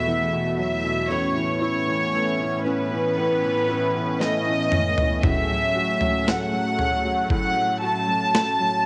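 Pop ballad excerpt at a slow 58 BPM with a hopeful, emotional mood, where an up-front, reedy violin section with light vibrato carries the melody over a brilliant, woody upright piano, an airy, detuned sawtooth pad with chorus, and a very quiet, full-bodied picked steel-string guitar playing arpeggios with audible finger squeak, joined at 4.2 s by a gritty, overdriven boom bap sampler-style kit with a thumpy kick and high-tuned snare that enters with a drum fill, all moving through Esus2, Aadd9 and F#madd9/A in light studio reverb.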